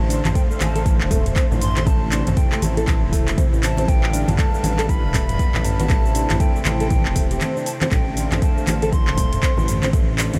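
An overdriven afro-pop kit of cabasa, handclaps, metallic hi-hat and toms sets up a swung 4/4 afro house groove at 119 BPM. Soft, close, very quiet congas enter underneath, and an overdriven electronic kick arrives to anchor it, all giving this earthy, driving cut from a longer piece its momentum. A smooth, nasal, detuned synth bass and a warbling vintage analog pad with subtle chorus both pump against the kick, as does a thumb-plucked nylon-string guitar whose classical arpeggios carry tape echo and the odd finger squeak. Over the cycling Dm7/A, Am and G7/A chords, a breathy, hollow, distant jazz flute floats a mellow melody through its own tape echo until 9.7 seconds, all set in a light reverb.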